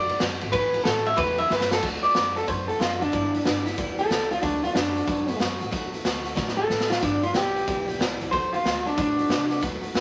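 Heard through a moderate studio reverb, this rowdy, upbeat rockabilly excerpt swings at 185 BPM in D major, with a twangy, slightly broken-up electric guitar through a small old amp up front opening on a clean solo melody, a boxy parlour steel-string acoustic guitar picking accompaniment in the background, a woody, growly pizzicato upright bass, and a gritty, saturated garage drum kit with a punchy kick in a pumping stone room that plays fills at 1.5 and 6.4 seconds.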